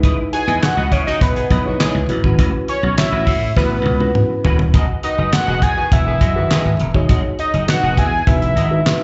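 Danceable and smooth, this cut of early-eighties boogie funk moves at 102 BPM in a straight 4/4 in E major, like a live club gig heard through the venue's PA, with club reverb and a dulled top end. The damped 70s drum kit sits up front, dry and mid-forward, with a fat snare, tight kick, hi-hat, handclaps and toms, and it plays a fill from 3.6 to 4.7 seconds. A bright, growly slap bass punches up front as well, while a mellow tine electric piano accompanies through its built-in speakers with slapback echo over C#m9, A69 and Emaj9 chords. A fat analog lead carries the melody up front, blending detuned sawtooth and square tones with sub octave, ring modulation, a filter sweep and vibrato. Behind it, a pop-style horn section with light vibrato adds a punchy second line until 6.7 seconds, and a scooped, clean semi-hollow guitar plays a fingered riff in the background through ensemble chorus and slapback echo.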